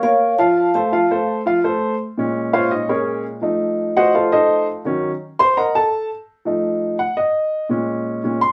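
A mellow, ringing vibraphone with medium motor vibrato opens a passionate, danceable Latin passage in Bb harmonic minor at 168 BPM, carrying the melody only until 1.3 seconds over a woody, intimate upright piano that sits up front with audible action noise and takes a solo from 2.0 seconds through a Bbm7, F7b9, Ebm7 and F7 progression, the band playing live in a small room with wet reverb.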